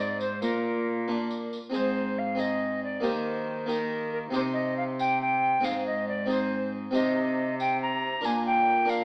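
Stately and festive, this short excerpt of a renaissance-style consort dance in 6/8 at 92 BPM sets an airy, chiffy alto recorder melody up front over a full, plucked Flemish-style harpsichord and a distant, nasal gut-string cello bass with light vibrato, while a jingly tambourine enters at 0.2 seconds in the background, all heard from further back in a stone room with an AM radio sound as the chords move through Bb, Ab, Eb and Cm.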